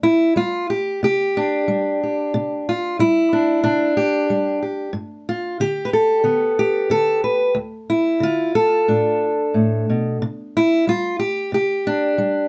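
Wistful and haunting, this folk piece for solo fingerstyle acoustic guitar moves at 91 BPM in a straight 4/4, drawn from a longer work. A fingerpicked steel-string acoustic guitar sits up front with a warm, concert tone and light reverb, ranging from D2 to B4. Its open, suspended harmony drifts from Csus2 through Gadd9 and Dmadd9 before settling back on Csus2 at 10.2 seconds.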